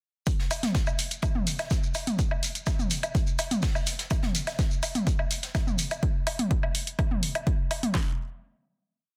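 From 0.3 s a short, hypnotic, cinematic techno piece drives forward with an overdriven deep house kit up front: a punchy four-on-the-floor kick, fat snare and handclaps, layered with programmed closed and half-open hi-hats, low toms and a low woodblock that pump against the kick. Underneath sit a jazz brush kit playing a looped, edited breakbeat on hi-hat and a medium-tuned snare, and a grainy, mellow shekere playing hand-played sixteenths, both tucked in the background until they drop out at 6.0 s. A final hit lands at 7.9 s, closing a dense, heavily limited mix with a small-room ambience.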